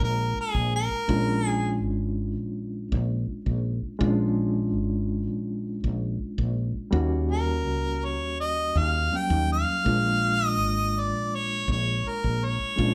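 A gritty, rollicking straight-eighth soul blues at 82 BPM opens with clear, overdriven harmonica over a reedy electric piano with fast tremolo and a woody, round fretless bass, moving from Bb7#9 to Eb7#9 and back. The jazz-style harmonica solo sits up front with light vibrato and scooped notes, dropping out at 1.8 seconds and returning at 7.3 seconds, while the lightly overdriven piano, heard through its built-in speakers, and the punchy, hollow-body bass carry on throughout. The band plays live together in one room with light reverb, in a short excerpt cut from a longer piece.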